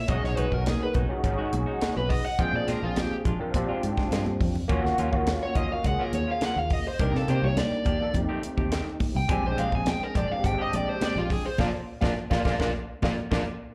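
A tight funk drum kit sets a straight 4/4 groove at 104 BPM, its high-tuned snare and tight kick sitting dry and up front, with fills at 4.0 seconds and again near the close. Hard-hand congas with a thick-skinned, high-tuned sound add slapback-echoed percussion from the background, while a foam-muted, round fingered bass anchors the low end in this slick, funky slice of electric jazz fusion in Bb mixolydian. Over them, a dark, smooth overdriven lead guitar takes a picked solo with slapback echo throughout. A barky, gritty tine electric piano, overdriven through a combo amp with ensemble chorus, comps through chords such as Ebm9, Cm9 and a rootless F9 before resolving to Bb13. A bright, clean semi-hollow guitar adds quiet stabs with subtle chorus, and the band hits a shared accent from 11.6 seconds in this live club recording heard through the venue's PA, cut from a longer piece.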